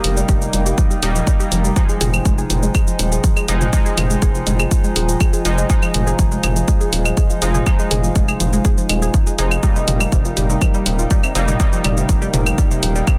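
Melodic techno at 122 BPM in F minor, dark and driving, this excerpt moves from Eb to Fm7 and back, with a punchy, tape-warm electronic kick entering up front at 0.3 seconds over a house kit of claves, hi-hat, shaker and toms, and a gritty, saturated synth bass that pumps against the sidechain. Above it, a round, nasal analog pluck spins arpeggios through chorus, phaser and delay, its filter sweeping throughout, while an edgy sync-sweep polysynth fires bright stabs with a cassette-tape tint. A deep, detuned analog pad holds moody sustained chords in the background, all set in light reverb under a dense, heavily limited master.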